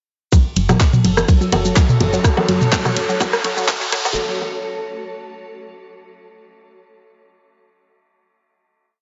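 An overdriven, up-front kick drives four-on-the-floor at 125 BPM in this quirky, hypnotic minimal techno build in F# minor, joined by programmed claps, closed hats and shaker, a very quiet looped brush breakbeat with dark cymbals, and tape-warm clicks of rim, bongo, woodblock and tom in cross rhythm. A squelchy, resonant blip pluck repeats a 3-step loop that drifts against the bar, phasered and pumping over a woody, round FM bass playing off-beat from 0.6 seconds. A blurred granular cloud pad with slowly shifting chords, a very quiet pulsing gated texture holding a high note, and an electronic riser from 1.3 seconds swell the filter-swept build toward 4.2 seconds in a dry, gritty hardware sound.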